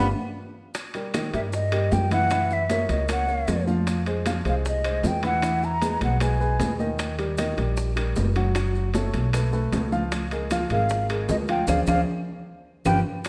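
Fiery yet sophisticated, this Afro-Cuban jazz passage, cut from a longer piece, opens with a band accent and a drum fill before the percussion groove settles in at 0.7 seconds. A breathy, mellow concert flute carries the expressive melody with vibrato, a crisp attack and rolled-off highs; it drops out at 6.8 seconds and returns at 10.7 seconds. Underneath, a polished, present grand piano supplies the harmony, while a dark, thumpy upright bass, plucked on gut strings, sits up front with a woody tone. The percussion is richly layered: ringing metal-shell timbales, bright, high-tuned congas struck with hard hands from a distant spot in the background, very quiet round, low-tuned bongos, close and dry claves, and grainy maracas tucked behind. The harmony moves through colorful chords such as F#13b9 and Db6, and the passage closes with another band accent and drum fill over Dm7b5 to G7, the band framed by a moderate recital hall reverb.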